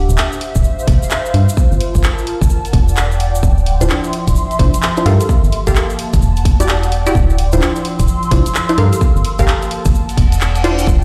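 UK two-step garage excerpt at 129 BPM in D minor with a swung, soulful and bouncy feel, built on a dark, hollow, organ-like FM bass up front and a tight, tape-warm electronic kick, a breathy, nasal pad pumping under chorus, a grainy, bright tube shaker, and a layered garage kit of handclaps and hi-hat, while punchy, detuned chord stabs with chorus and delay join at 3.8 seconds over the Dm9, Gm9 and Em9 changes, a reverse cymbal sweeps in at 10.1 seconds, and a faint, ethereal pad appears at 10.9 seconds, all heard as if through a big sound system in a bare stone room.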